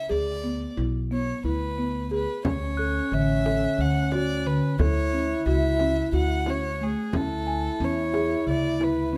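A close, airy violin opens this hopeful excerpt of contemporary chamber music in 7/8, joined at once by mellow, buzzing marimba arpeggios under soft mallets and a woody pizzicato upright bass set up front. At 2.4 seconds a deep frame drum enters in the background, followed by a dark, smooth French horn carrying a second line, while bell-like, shimmering crotales ring behind from 2.8 to 4.7 seconds. Light reverb and detailed microphones frame the small ensemble as the chords move from E7 through Dmaj7 and F#m7 to Amaj7/D.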